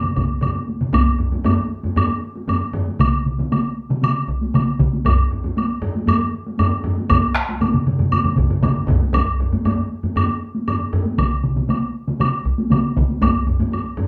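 A straight 4/4 pulse at 117 BPM drives this ceremonial Japanese traditional taiko excerpt, where four taiko ensembles, two struck with hard sticks that sound distant in a large room, one with heavy sticks up front in a live room, and one with hard sticks compressed and saturated, pound together from the opening second to about 14 seconds over a woody, distant woodblock, all captured live in one room with a wet studio ambience.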